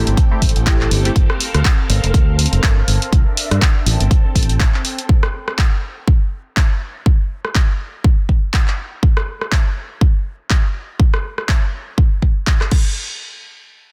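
A punchy analog drum machine of hi-hat, handclaps, rim click and crash opens this funky, sensual filtered disco house excerpt at 122 BPM, swung on the sixteenths, and plays on until the end at 12.8 seconds. A moment later it is joined by a punchy, tape-warm electronic kick that sits up front. A round, dark fingered electric bass holds the low end until 4.7 seconds, while a brief detuned sawtooth polysynth comp with a filter pluck, chorus and phaser stops at 1.1 seconds, and a swirling, bright string machine with ensemble chorus and 12-bit grit sustains chords over Am7, Gm11 and C9 until 5.1 seconds. The bass, synth, strings and the drum machine's hats, claps and cymbals pump against the kick, and the bass, synth and strings are low-pass filtered in a dry, dense, heavily limited mix.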